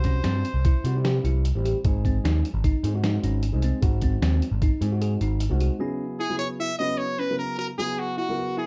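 This tense, driving excerpt of progressive instrumental band music moves in an uneven 5/4 with a straight feel, propelled by a lo-fi, sampler-style drum kit whose thumpy kick, medium-tuned snare and hi-hat sound muffled and tape-warm, as if re-recorded in a large room. Underneath, an overdriven picked electric bass growls up front with a punchy, amped edge, and both bass and drums play until about 5.7 seconds, with kick and snare dropping out at 5.0. A dark concert grand piano supplies mellow, short-sustained accompaniment with a vintage, smooth low end throughout, while a bell-like tine electric piano threads clean, bright arpeggios through a delay. A brilliant trumpet states a forceful, pop-style solo line with light vibrato, sounding distant and roomy yet up front, heard briefly at the opening and again from 6.2 seconds. The harmony shifts from C to G# and settles on C#m as a new section begins near 5.8 seconds, all within a dark production that carries little reverb.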